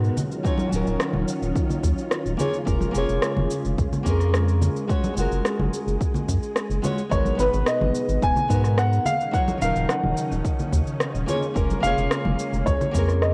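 A fingerpicked nylon-string guitar with finger squeak, run through cassette tape and analog delay, opens this warm, smooth sunset chillout excerpt in Eb minor at 108 BPM alongside a silky, chorused string machine, a round, dark analog bass sitting up front, and an overdriven, tape-colored electronic shaker and rim click, soon joined by bright congas and a deep, layered, overdriven electronic kick, before a clear, intimate concert grand piano with audible action noise and delay takes the melody at 7.1 seconds over chords moving from Ebm9 through Gbmaj9 and Abm9 in a small, lightly reverberant room.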